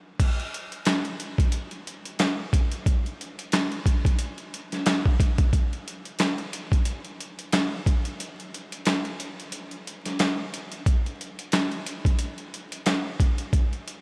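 Over vinyl crackle and light reverb, a gritty, reflective hip hop excerpt at 90 BPM in 4/4 with a 57% sixteenth-note swing opens at 0.2 seconds on an up-front, compressed, sampler-style boom bap drum kit, re-recorded in a large room, with a thumpy kick, medium-tuned snare, hi-hat, handclaps and crash cymbal, and a break from 8.2 to 10.9 seconds before the groove carries on to 14.0 seconds.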